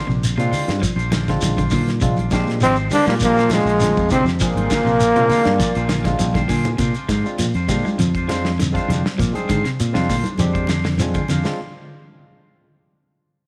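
Bright, twangy electric guitar stabs open this funky, driving afrobeat excerpt at 100 BPM in Bb mixolydian, joined at once by slightly broken-up guitar arpeggios in the background, a round, punchy fingered bass, a grainy shekere, thin-skinned congas, a dry, damped 70s drum kit with a tight kick, and a barky tine electric piano with lush chorus that adds fills, while from 2.6 to 6.2 seconds a clear, up-front trombone carries the melody over very quiet second lines from an edgy tenor saxophone and a raspy baritone saxophone, and a drum fill at 6.0 seconds leads into the next section, in a light studio reverb.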